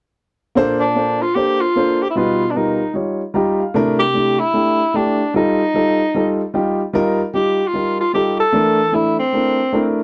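A warm concert grand piano opens this jubilant, uplifting gospel fragment at 0.6 s, laying down deep-bass chords in Bb major at a swung 150 BPM in 4/4. A breathy tenor saxophone takes the melody from 0.8 s, its whispered subtone, soft attacks, scooped notes and vibrato giving the jazz-style solo an intimate, vintage quality. The piano adds a short fill at 3.1 s, and the harmony moves through rich chords such as Bbmaj9, C13 and F9sus4. Both instruments sit up front in a dry, close 1970s-style studio sound, touched with light reverb.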